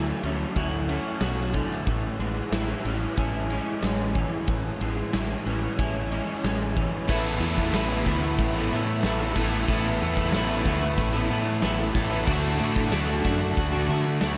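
This wistful, blissful shoegaze and dream pop excerpt opens with a lo-fi, slightly broken-up guitar through a small old amp, fingering arpeggios under subtle chorus and a diffuse ambient delay, alongside two overdriven semi-hollow guitars playing riffs, one dark with ensemble chorus and the other sitting further back with reverse reverb. A growling fingered bass with overdrive anchors the low end, and a huge arena drum kit enters at 0.2 seconds, up front with punchy kick, medium-tuned snare, and bright crash, ride and hi-hat in a hall sound. The tempo is a straight 92 BPM in 4/4, in A major, with chords moving from Dmaj9 to Amaj7 and later to Asus2 and D. At 7.1 seconds a bright, double-tracked distorted guitar joins with its own riff in the background, and a jingly tambourine follows at 7.7 seconds. The whole mix is soaked in a vast ambient reverb, giving the layered guitars a dreamy, hazy glow as the passage runs to its close at 14.4 seconds.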